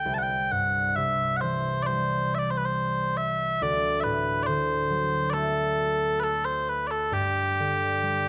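A mellow small bagpipe and a concert harp sound together from the very start of this brief excerpt of a Celtic slow air, which carries a pastoral, tender mood. The bagpipe carries the melody as a sweet, continuous solo line, sitting up front between G4 and A5. Beneath it, the thumb-plucked harp supplies a low accompaniment from C2 to A3, its acoustic tone ringing and also close in the mix. The phrasing moves in a free, rubato feel over a 4/4 frame, with the harmony passing from C to D7 at 3.6 seconds and settling on G5 at 7.1 seconds. Close, detailed microphones and light reverb give the pair an intimate, clear presence, with the tuning set slightly low at A4 = 439 Hz.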